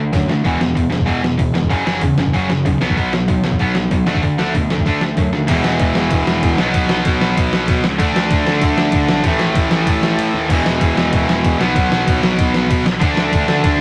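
Rowdy and rebellious, this short punk rock excerpt drives in straight 4/4 with a tight, bright distorted guitar riffing up front over a compressed electric guitar and a growly fuzz bass, while a gritty, pitched-down sampler-style drum kit with a thumpy kick kicks off with a fill, a double-tracked high-gain guitar joins at 5.5 seconds, and the kick and snare briefly drop out at 10.2 seconds in a rough rehearsal-room sound.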